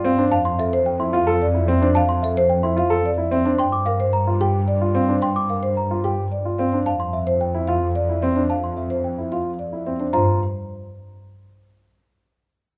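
Close, detailed microphones and light reverb frame this urgent yet meditative minimalist classical pattern piece in G dorian, moving at 110 BPM in a straight 3/4 and cut from a longer work. A mellow, woody marimba with soft mallets carries the melody over intimate grand-piano arpeggios, whose action noise is audible, while a rich, bowed double bass section holds the bass with smooth vibrato up front. A delicate, bell-like celesta joins at 0.3 seconds with airy arpeggios above, as the harmony shifts from Fmaj7 toward Gm7 near 10.1 seconds.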